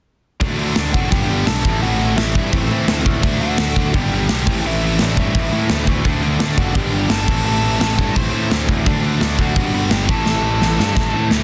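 Punk rock at 171 BPM in a straight 4/4, this rowdy, energetic excerpt from a longer piece barrels through a looping D, G and A minor progression from start to finish. Three distorted guitars drive picked riffs under it: one bright and compressed, one overdriven and sitting in the background, and a scooped, high-gain, double-tracked part, with the first and third mixed very quietly. A fuzz-laden, growly picked bass with overdrive holds down the low end, while a big acoustic rock kit sits up front with a punchy kick, a medium-tuned snare and bright crash cymbals. From 0.9 seconds a dark, smooth overdriven lead guitar carries the melody, ranging from C4 up to C6. The drums close with a fill from 10.3 to 11.4 seconds, and the whole thing is dry, with little reverb, in a dense, heavily limited modern master.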